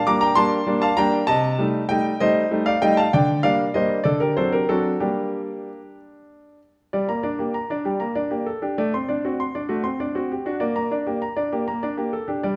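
In a straight 6/8, this elegant, graceful classical-period sonatina excerpt features a solo grand piano, clear, smooth and vintage in tone with short sustain and placed up front, playing across a middle-to-upper range through a moderate recital-hall reverb in a dark production, with a second phrase beginning at 6.9 seconds before the passage is cut off at 12.6 seconds.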